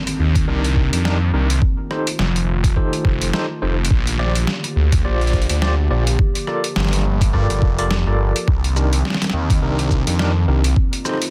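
A swirling, thick detuned saw bass sits up front in this playful, funky glitch hop excerpt, its phaser and tube saturation giving the low end a saturated, sustained weight. Beside it, a thumpy, pitched-down electronic kick drum lands with overdriven grit, joined by a compressed sampler-style boom bap kit of hi-hat, rim click, shaker and a medium-tuned snare, all played with a swung sixteenth feel. An overdriven tine electric piano adds barky stabs through a combo amp, colored by fast tremolo, 12-bit sampler crunch, dub echo and sidechain pumping. Underneath, a dark, nostalgic tape-like pad warbles in the background with slow-attack sustained chords, chorus and its own reverb, moving through Cm9, F7, Bb6 and Gm7. A very quiet electronic impact marks the opening, ending by 1.6 seconds, and the whole sound is dry, dense and heavily limited in a modern master.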